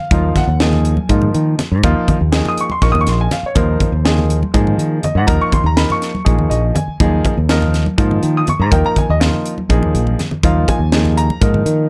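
A dry recording carries this slick, intense electric jazz fusion passage in 7/8, taken from a longer piece, where a clear, intimate grand piano with audible action noise and plate reverb accompanies up front beside a growly, punchy fingered electric bass and a crisp, polished drum kit with a high-tuned snare and punchy kick, while thick-skinned congas struck with hard hands sit in the background, and the piano's fill at 6.3 seconds and a drum fill at 9.9 seconds stand out.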